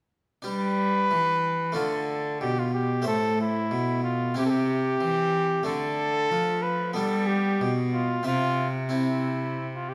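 Festive and courtly, this short fragment of a renaissance-style consort dance moves in a straight, even four. The harpsichord enters first at 0.4 seconds with an airy, bright, plucked accompaniment in a French manner, joined a moment later by the cornet and cello. The close-miked solo cornet sits up front with a warm, classical-style melody in a narrow middle range, while the single bowed cello carries the bass with a reedy gut-string tone in period style. The harmony steps through G, D minor, A minor, C, D minor, G and C, and the whole passage is framed by the resonant wash of a stone room.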